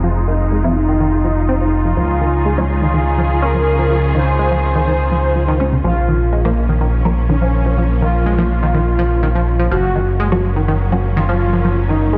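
A dark, dramatic techno passage at 124 BPM opens with a gritty, saturated synth bass up front, a tight, detuned sequenced arpeggio with chorus and delay, veiled con sordino strings holding lush, distant chords, and a bold, fat analog synth brass melody that warbles with vibrato and tape echo. From 0.6 seconds a deep, full-bodied dub chord stab, filtered and phased, sits in the background as the harmony moves from Fm7 through Dbadd9 and Bbm to Gb. The whole mix sounds as if played on a big sound system in a bare stone room, its reverberant space dulled by a low-pass filter.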